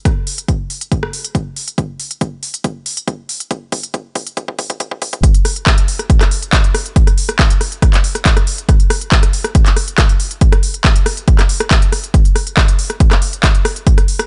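A straight 4/4 techno groove, industrial and hypnotic, rides on a punchy, analog, up-front electronic kick drum and a layered, overdriven drum kit of handclaps, rim clicks and smooth hi-hats that pump under sidechain, rising through a filter sweep from the start and a drum fill from 1.8 seconds until the drop lands at 5.2 seconds, in a dry, high-passed mix cut from a longer track.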